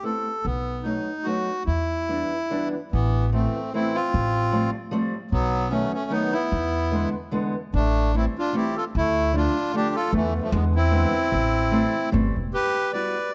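A lilting 3/4 musette waltz at 149 BPM with a gentle swing, this nostalgic, bittersweet passage in A minor sets a reedy, dry-tuned single-reed accordion melody up front over a boxy, parlour-toned fingerpicked steel-string acoustic guitar and a growly, woody pizzicato upright bass, all captured with close, detailed microphones and light reverb, in a fragment cut from a longer piece.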